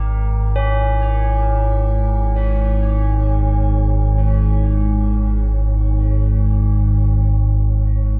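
Dark ambient drone in free time, cavernous and dark, this brief fragment is cut from a longer piece and tuned slightly flat to A4 = 439 Hz. A deep, ominous rumbling drone sits up front through the whole 8.2 seconds, its vintage blend of triangle and sawtooth tones warbling with a slow attack, long release and its own built-in reverb. Tubular bells play arpeggios high above it, fading in across the full span from 0.0 to 8.2 seconds, their metallic, solemn ring struck with a plastic hammer and colored by a boxy small-room character. Dub echo and shimmer reverb trail the bells, which stay far back beneath the dominant drone. The fragment rests on a G#sus24 chord, with a moderate echo chamber reverb and an echo-heavy mix lending a dark, hollow depth.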